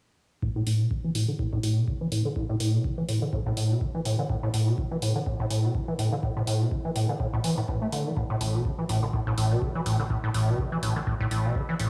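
A squelchy, resonant acid bass riff sits up front from 0.4 seconds, its filter sweeping throughout as chorus, tape echo and sidechain pumping give it a liquid, trippy motion in this raw acid house excerpt with a swung 16th-note feel in 4/4. A deep, tape-warm electronic kick and metallic hi-hats drive the groove, while a round, dark analog sub bass joins in the background at 8.4 seconds, with its own sidechain pumping. The whole mix is dreamy and soaked in a lush hall reverb, and the piece is cut from a longer track.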